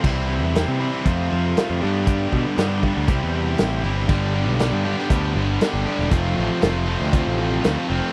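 Classic rock with a confident, swaggering strut at 118 BPM in straight 4/4, built on overdriven riffs from a bright cranked stack guitar and a distorted electric guitar, joined at 4.1 seconds by a double-tracked third guitar in the background, all over a growling, punchy picked bass up front and a vintage drum kit with a punchy kick, medium-tuned snare, hi-hat and crash cymbal, moving through C, F and G in a dry, close 1970s-style studio sound cut from a longer piece.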